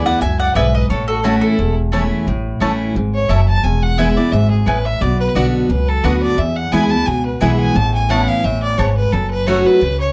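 A swung 4/4 bluegrass groove drives this rustic, joyful fragment: an up-front, woody mandolin carries the melody only until 1.7 seconds, a second mandolin adds round picked stabs from 0.6 seconds, a full-bodied jumbo guitar with finger squeak and a thumpy pizzicato upright bass hold down the accompaniment, and a clear, biting fiddle with light vibrato moves from second line into a solo at 2.3 seconds, set in a dark small-room production marked by lossy compression artefacts.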